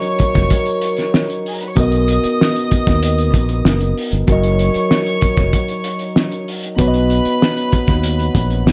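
A muffled, cloth-damped drum kit with a fat snare opens this smooth, bittersweet excerpt of lush 1970s-style soul at 96 BPM, joined at once by a mellow tine electric piano, a biting, earthy violin section carrying a second line, a background French horn section holding sustained chords with light vibrato and a grainy tube shaker, while a growly, bright fingered electric bass enters at 0.2 seconds as the harmony alternates between Gb6 and Bmaj7 in a dark, warm production with light reverb.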